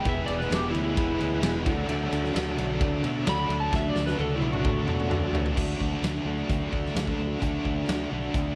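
Classic rock with a swaggering, sunny mood, this short cut from a longer piece moves in a straight 4/4 from E to D. A dark, slightly broken-up electric slide guitar takes a solo over the first 5.6 seconds, while a big acoustic drum kit with a fat snare and punchy kick plays a fill from 3.7 seconds. Up front, a sludgy distorted guitar drives a riff, joined by a biting overdriven guitar with tremolo sitting further back, and a round, fingered electric bass anchors the low end. Very quiet in the mix, a shimmering, octave-doubled twelve-string acoustic guitar, a reedy electric piano and a shouting tonewheel organ through a slow rotary speaker fill in the harmony, with the piano and organ stopping at around 5.5 seconds. Light reverb and small room ambience frame the whole band.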